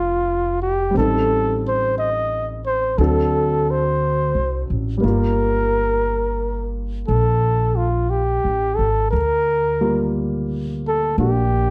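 Intimate and wistful, this slow jazz ballad at 59 BPM in G minor swings gently in 4/4, drawn from a longer piece and tuned to A4 = 441 Hz. A close-miked flugelhorn with vibrato carries the melody up front, touched by a slapback echo, while a grand piano accompanies with its action noise audible and a woody pizzicato upright bass holds the low end throughout the 11.7 seconds. The dry, close 1970s-style studio sound frames a progression moving from Bbadd9 through Am7b5 and D7 to Gm9, which arrives at 5.0 seconds.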